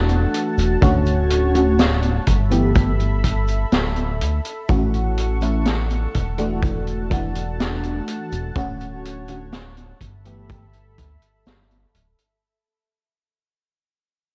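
Lightly reverberant studio ambience wraps this faded, nostalgic vaporwave excerpt at a slow 62 BPM in straight 4/4, which fades out from 2.1 seconds as chords drift from E9sus4 through Dmaj7, G69 and A6. A dreamy, detuned FM electric piano with a soft pad layer carries the accompaniment up front through phaser, chorus and tape echo, while a thick, warbling unison pad holds high sustained chords with a slow attack and long release. A glossy, nasal chorused synth bass with tube saturation sits underneath, joined at 0.1 seconds by a small-room street-band kit of cabasa, hi-hat and high-tuned snare in gated reverb, and from 0.8 seconds by a boomy kick with a rolled-off top.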